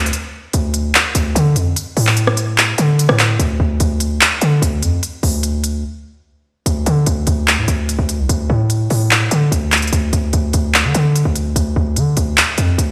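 A punchy, heavy 808-style bass anchors this brooding, menacing trap cut, its sine tone carrying a noise layer with a fast attack and a decaying tail, sitting up front between C2 and D3 from the opening moment. The hip hop groove runs at 147 BPM in 4/4 with a half-time feel, set in D minor. An electronic, produced trap drum kit arrives at 0.1 seconds, also up front, with crisp hi-hats, handclaps and rim clicks carrying a tape-warm edge. Brief breaks interrupt the beat early on and again just before the music shifts into a new section at 6.7 seconds. The whole mix has light reverb and digital ambience, sounding as if played on a big sound system in a bare stone room. It is a short section taken from a longer piece.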